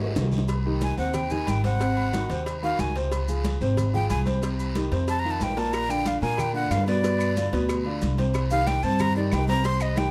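A dark, warm production with light reverb carries this driving, sultry Afro-Cuban jazz excerpt in C minor at 184 BPM, opening with a brief drum fill and woody pizzicato upright bass up front. A breathy, bright jazz flute with vibrato and a crisp, chiffy attack takes a solo from 0.8 seconds over a natural-sounding grand piano, while congas, tight bongos and cowbell, ringing timbales and agogo bells and grainy maracas sit in the background and a raspy guiro sounds distant. Very quiet claves join at 5.7 seconds as the chords move from Cm through Ab7, Dbmaj7 and G7 back to Cm.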